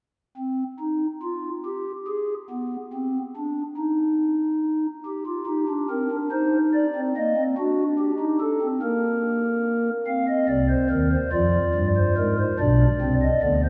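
A soft, hollow stopped-flute pipe organ, sitting up front with mellow, romantic voicing, carries this driving, serious baroque-style three-part fugue in a straight 6/8, playing alone from 0.4 s to the cut at 13.7 s of a longer piece and bathed in a dark, lingering church reverb.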